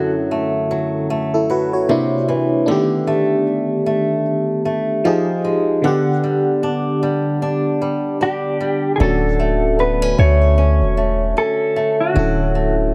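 Swung sixteenths at 76 BPM in 4/4 give this romantic, dreamy R&B passage in D major an unhurried, lilting sway. A glassy FM electric piano with a bell-like attack, chorus and tremolo carries the accompaniment throughout, joined by a boxy fingerpicked swing-style acoustic guitar playing arpeggios touched with digital delay and audible finger squeak. The harmony drifts through colorful chords such as F#m7, C9, B7alt/D and Fm9 before settling on Dmaj7 at 9.0 s, where a deep, boomy 808-style bass enters. Just before that, at 8.2 s, a dark, clean, compressed electric guitar takes up the melody with a digital delay. The parts sit up front within a moderate concert hall reverb that gives the cut from a longer piece a soft, spacious glow.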